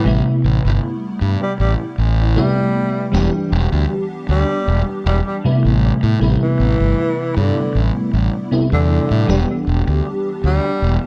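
Vaporwave with a melancholic, hazy mood, this short excerpt unfolds at an unhurried pace with a slight swing on the sixteenths, cycling between Am9 and Em7. A breathy tenor saxophone carries the melody in its low register, its whispered, intimate tone shaded with vibrato, vintage 12-bit sampler grit and tape echo, sitting softly back in the mix. Up front, an FM electric piano layered with a soft pad supplies lush, dreamy accompaniment, its fast-attack, decaying notes treated with phaser, ensemble chorus and analog delay. Beneath them, a fingered electric bass enters at 0.1 seconds with a growly, overdriven fuzz tone, direct and prominent. The production is dark and cassette-tinged, wrapped in light reverb and small room ambience.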